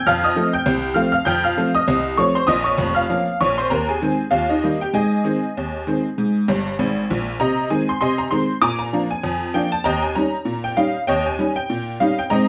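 Set in a wet studio reverb with the feel of a live room, this lively, playful ragtime piano excerpt at 98 BPM in 2/4 with a swung lilt in Ab major features a jangly, metallic tack piano playing solo and sitting up front, spanning from deep bass to high treble through two repeated passages, with a honky-tonk fill at 6.5 seconds before the second passage begins at 7.4 seconds over a progression that moves from F7 through Bbm and Eb to Ab and on to Bb7 and Eb7.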